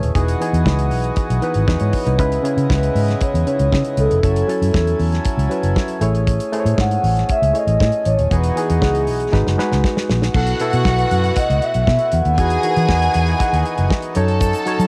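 Disco with a sultry, driving feel, cut from a longer piece and heard as a home cassette recording in a light reverb, where a mellow soft-mallet vibraphone carries the melody over a barky, lightly overdriven reed electric piano, breathing nasal harmonium chords, a dark, round foam-muted fingered bass sitting up front, and a dry, tight 70s drum kit with a rolled-off top. As a drum fill ends at 10.3 seconds, the harmony, having moved from Emaj7 and C#m7 through F#m7, Amaj7 and G#m7, lands on B7sus4, and a lush, close studio violin section enters with a smooth, vibrato-rich second line. A grainy tube shaker appears in the background only at 14.4 seconds.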